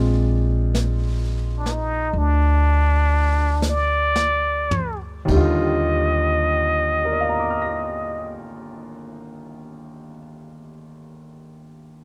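A plunger-muted trumpet carries the melody of this late-night, romantic jazz ballad, entering at 1.6 seconds with a bright wah-wah tone, vibrato and scooped notes. A brilliant grand piano accompanies throughout, while a woody pizzicato upright bass anchors the low end until 8.3 seconds. A brushed drum kit with dark cymbals and a boomy kick plays a fill as the swung 4/4 feel slows, before the harmony shifts from Bb7 to Ebmaj7 at 5.3 seconds, all in a dark, dry production with a faint mains hum.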